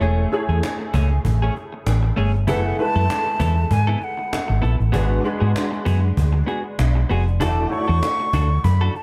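A snappy, distant cajon with snares sets a lightly swung 97 BPM groove in 4/4 for this urban, bittersweet slice of polished 1980s jazz-funk pop in F# minor, where a round, up-front fingered hollow-body electric bass anchors the low end, an ensemble-chorused grand piano supplies accompaniment, a clean, compressed semi-hollow electric guitar with lush chorus plays a riff, and from 2.5 s a pure, close-miked concert flute with vibrato carries the melody over chords of Amaj7/E, F#m11, G#m7b5 and E9sus4, all set in a dark production with light small-room reverb.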